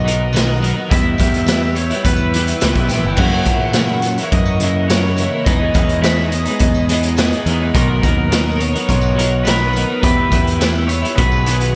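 A straight 4/4 pulse at 105 BPM drives this jangly, wistful indie rock excerpt in B major, cut from a longer piece and drifting through chords such as Bmaj7, Em, F#7 and Emaj7 before settling on B6. Up front, a gritty, saturated garage drum kit with a punchy kick, medium-tuned snare, hi-hat and crash cymbal pumps in its small room, its top rolled off, while a very quiet, jingly tambourine joins from 0.3 seconds. A growling picked electric bass, bright and overdriven, anchors the low end as a double-tracked, compressed twelve-string electric guitar rings out a clean, warm riff. Above it, a raw, lo-fi garage guitar carries the melody with overdrive and tape echo. Sitting in the background, a smooth tonewheel organ holds sustained chords through chorus vibrato and a slow rotary speaker, key click audible, and a huge ambient reverb soaks the whole mix in a dreamy haze.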